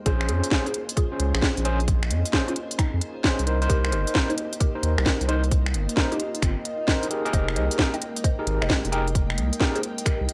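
Skippy and bouncy, this short cut from a longer two-step UK garage track sits in a drop with a swung sixteenth-note feel. Up front, a tight, tape-warm electronic kick and a garage kit of cracking snare, crisp filtered hats and finger snaps carry the groove beneath a deep, thick, saturated sub bass. A bright, barky overdriven tine electric piano fires stabs through a combo amp, colored by fast tremolo and tape echo, while a woody, round mallet-like pluck carries the melody in the background with phaser, ensemble chorus and analog delay. Beneath them, a moody, dark ambient pad breathes with sidechain pumping and its own reverb, and a very quiet, silky string machine holds sustained chords over a progression from Bbm9 to Cm7 at 3.5 seconds and Fm11 at 7.1 seconds. The mix is dry and gritty, with a hardware edge.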